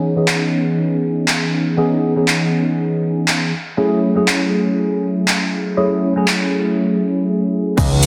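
A bell-like tine electric piano, gritty with vintage sampler crunch, phaser and sidechain pumping, moves from C#m7 to F#m7 under a filter sweep in this groovy, nostalgic filtered disco house piece at 120 BPM with a light 16th-note swing, joined at 0.3 s by a tape-warm house kit of metallic hi-hats, handclaps, shaker and crash that pump with the sidechain, before a punchy electronic kick and a fat, nasal, saturated analog bass drop in at 7.8 s, all set in light reverb with a dense, heavily limited master.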